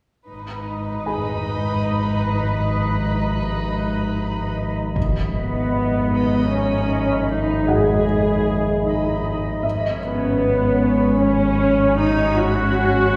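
A tense, mysterious cinematic cue in a slow three-beat metre, this excerpt opens on a G# minor chord with muted, bowed strings: a double bass section and a cello section hold a low foundation in the background, while a lush studio violin section carries a veiled second line and a distant symphonic violin section adds a faint high texture until about 4.5 seconds. A bubbling synth texture of detuned, resonant sawtooth with random filter steps fades in with chorus and its own reverb, sustaining chords, and a dark, intimate baby grand piano enters very quietly, its action noise audible and its notes short. At 1.6 seconds an eerie, metallic FM drone with a nasal, inharmonic edge settles in low, also treated with chorus and reverb. A huge, dark impact sounds in the background at 5.0 seconds, after which an up-front muted viola section takes up the accompaniment with light vibrato, and later the harmony shifts to Bsus2 over G#. 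The whole is heard from further back in a wet recital hall, its lingering reverb deepening the shadowy mood.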